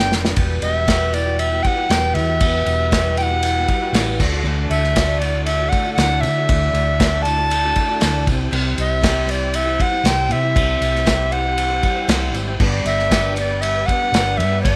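A straight 4/4 pulse at 118 BPM, kicked off by a brief drum fill, drives this hopeful, open-road folk and heartland rock excerpt, where a reedy tenor recorder with soft-attack vibrato carries the melody up front over a boxy picked ladder-braced acoustic guitar with finger squeak, a round, dark hollow-body electric bass, an airy unplugged kit played with bundle sticks, a twangy, slightly broken-up electric guitar riff in the background, very quiet slow-rotary tonewheel organ chords and a faint jingly tambourine, all set in light studio reverb as the harmony moves from Emadd9 through Dadd9 and C to G.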